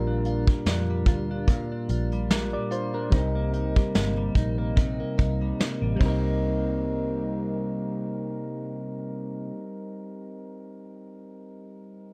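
Wistful and mellow, this short excerpt of indie bedroom pop drifts at 73 BPM in C minor with a light 16th-note swing, moving from a Bb6 chord to Cm7 under a dark production with light reverb. Soft brushes on an up-front kit with tight kick, ride and hi-hat carry the rhythm until about 6.2 seconds, while a foam-muted, round vintage bass sits low beneath a clean, picked guitar recorded direct with analog chorus and a warbly pitch drift. Gentle, triangle-toned synth keys with a fast, decaying attack and cassette-tape coloring float up front and linger alone until 12.1 seconds.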